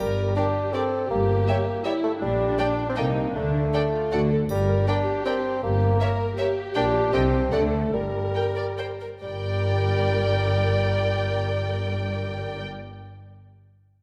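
Magical and sneaky, this playful, whimsical film cue in G minor moves in 3/4 at 133-162 BPM, with a mellow, up-front bassoon and a lush string bed of viola, background cellos and distant double basses under a smooth violin melody and a darker, portamento-tinged violin second line, a faint triangle sounding in the background at 4.5 seconds, all bathed in a wet scoring-stage reverb as the music slows between 6.2 and 9.2 seconds before this fragment of a longer piece closes on G minor.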